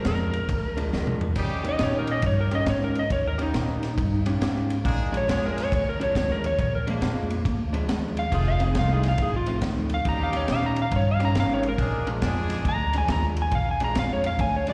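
A dark, slightly broken-up electric slide guitar leads this gritty, swaggering electric blues shuffle, played with fingerpicks and sitting up front with a slapback echo as it solos across the whole 14.7-second excerpt. Beneath it, a guitar through a small old amp works a picked, compressed riff bathed in spring reverb and slapback, while a woody, thumpy upright bass on gut strings anchors the low end, plucked and close. The crunchy breakbeat kit sounds saturated and rolled-off, with a high-tuned snare, tight kick and dusky cymbals, and it drops a short fill at 0.9 seconds. A brilliant, tight horn section with vibrato and octave doubling adds jazz-style stabs from 1.4 to 12.8 seconds, carrying slapback and analog delay. The shuffle swings at 138 BPM in Bb mixolydian, moving through Bb7, Eb7 and F7 changes, and the whole performance comes across like a live gig heard through the venue's PA, with a small-room ambience and recital hall reverb.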